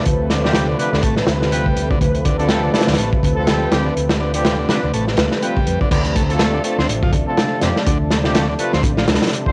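A gritty home cassette recording with light small-room reverb frames this funky breakbeat fragment, driven by a swung, up-front drum kit of punchy kick, medium-tuned snare, hi-hat, crash and dark cymbals, all saturated with a rolled-off top. A round, amped hollow-body bass with tube saturation anchors the Dm7 groove, while a buzzy vintage combo organ riff with light vibrato and tape echo plays alongside a lush, detuned sawtooth pad that is nasal, bright, chorused and sidechain-pumped, and a brass ensemble adds classical-style stabs from 0.4 s. The drop arrives at 5.9 s and carries the groove to the end of the cut.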